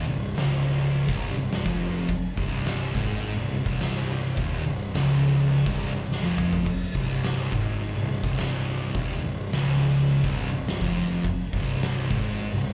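Two thick fuzz guitars grind out a sludgy, ominous riff from the opening of this stoner and doom metal fragment, one dark and up front and the other slapback-echoed in the background, over a round, overdriven picked electric bass and an oversized low-tuned drum kit with a fat snare, punchy kick and dark cymbals that enters at 0.4 seconds and plays a fill at 6.1 seconds, the performance heard as a live gig through the venue's PA with club reverb.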